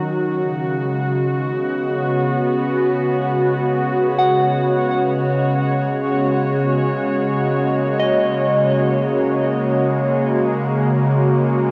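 A warm analog pad holds sustained C#7sus4 chords up front while a soft FM synth bell traces gentle arpeggios in the background, both warbling through chorus and shimmer reverb in this peaceful, free-time ambient excerpt, which sits in a huge, wet space on worn cassette tape with a warbly pitch drift and is tuned to A4 = 438 Hz.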